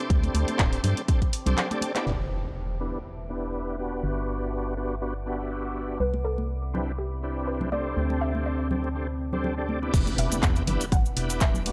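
Smooth and deep, this deep house cut from a longer piece moves at 122 BPM in E minor with a swung 16th feel, as a dark, detuned sawtooth pad sits in the background under shouting, lightly overdriven tonewheel organ stabs with key click and slow rotary speaker, both pumping along with a hollow, percussive FM bass held up front. A punchy layered kick and a house kit with bright hats, handclaps and crash open the piece alongside damped, high-tuned congas, the kick and kit stopping by 2.0 seconds as a drum fill leads into an electronic impact, and a soft, round pluck with lush chorus and delay enters at 6.0 seconds over chords moving from Em7 through Gmaj7 and Cmaj9 to D7sus4. At 9.9 seconds the drop arrives, bringing back the kick and kit with grainy cabasa and another impact, all set in light digital ambience.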